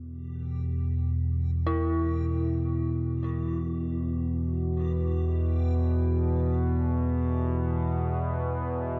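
A warm analog drone sits up front in E minor from the start, its evolving sawtooth, pulse and wave-folded sine tones sustaining under chorus, while a bright, reversed, granular texture fades in from the background with a dreamy, detuned shimmer. At 1.7 s an eerie, inharmonic FM bell enters with arpeggios, its decaying tones colored by chorus, phaser and tape echo. This ominous dark ambient drone in free time is cut from a longer piece and hangs in a cathedral reverb with a 5.9-second tail.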